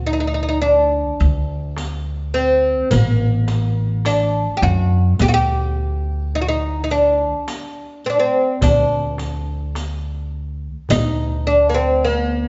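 The fretless oud leads this stately, passionate Turkish makam ensemble piece in 10/8 with a straight feel, its plectrum-plucked double strings sounding woody and up front as it carries the melody. An upright bass, played pizzicato on steel strings, sits up front as well and gives the music a warm acoustic foundation. The darbuka, with its clay shell and natural skin, enters at 0.6 seconds, struck with hard hands but set in the background. The riq follows at 1.2 seconds, its dark jingles played with soft hands. A moderate recital hall reverb lends the ensemble a sense of space, and the mellow top end suits a church or concert hall recording of a passage cut from a longer piece.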